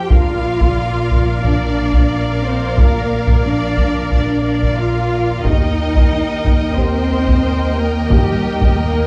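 A heroic, adventurous stretch of epic orchestral film score opens on a lush, bowed violin melody over a woody cello bass, joined at once by a soft-attack second violin line, a smooth viola accompaniment, an expressive double bass section, very quiet mellow French horn chords that stop at 8.3 seconds, and a distant taiko ensemble struck with hard sticks, the whole cue sitting in a dark, warm production with moderate scoring-stage reverb.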